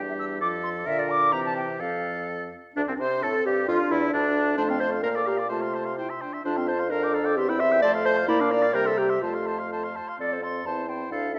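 This quick classical-period movement for wind quintet is a lively, cheerful fragment cut from a longer piece, moving in 2/4 at roughly 122-135 BPM in F major with a rubato feel. The silver concert flute carries the melody from 0.1 s, its pure tone shaped by vibrato, a crisp attack and an expressive line that sits at some distance. The clear oboe plays a second line with light vibrato, while the clarinet's dark, present accompaniment stands as the most forward voice. A roomy French horn with vibrato fills in the middle, and a mellow bassoon anchors the bass with light vibrato. Chords of F, B-flat, C and F give way at 2.8 s to a new section, and a wet scoring-stage reverb with a soft top end surrounds the whole ensemble.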